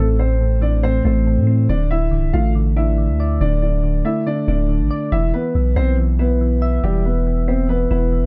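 A dark, boxy concert grand piano carries the melody from the start, its tape echo trailing over soft, round electric-piano-like synth keys with a gentle chorus and a deep, sine-toned 808-style bass that sustains long and sits up front. This ominous, tense drill hip hop fragment moves at 140 BPM in a half-time 4/4 feel, shifting from Am to D5 at 1.7 seconds and E5 at 5.1 seconds. The mellow production has a small room ambience and a warm, shadowy tone throughout.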